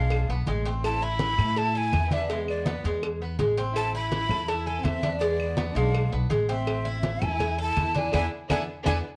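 Driven by congas, cowbell and claves at a straight, danceable 165 BPM in 4/4, this sultry excerpt of Cuban son and guajira in A harmonic minor puts a breathy, close-miked jazz flute with crisp chiff and plate reverb up front over a lush bowed violin section, picked arpeggios on a metallic double-strung tres, and dark, woody pizzicato upright bass, moving through E7 and Am chords to a band accent at 8.1 seconds, all colored by worn, warbling cassette tape.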